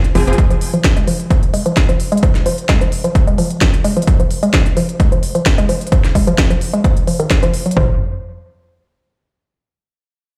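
Dark and driving peak-time techno at 130 BPM in F phrygian, cut from a longer piece, where a woody, warbling wave-folded pluck riff with chorus, tube saturation, sidechain pumping and digital delay sits up front over a punchy kick with toms, a cracking snare and smooth, pumping hats, a tight sawtooth sequencer bass that appears only briefly at 0.2 and 7.8 seconds, and a filter sweep on a synth arpeggio sound until 7.8 seconds, all in a big, bare room with large studio reverb.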